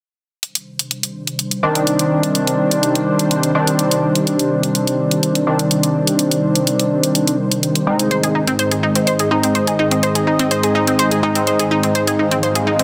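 A dry, up-front electronic hi-hat sets a straight 4/4 pulse at 125 BPM from 0.4 seconds, opening this hypnotic, melancholic melodic techno passage in C minor, cut from a longer piece. Moments later an airy, evolving pad of detuned sawtooth layers with a noise wash fades in on slow-attack sustained chords under chorus, and an edgy, nasal sync-sweep polysynth follows with bright, detuned stabs treated with chorus and tape echo. The harmony rests on a Cm(add9) chord, moving to Ab at 8.1 seconds just as a round analog pluck enters with quick, decaying arpeggios, also carrying chorus and tape echo. A very quiet electronic riser appears at 12.4 seconds as the clip closes. Light reverb surrounds a dense, heavily limited modern master.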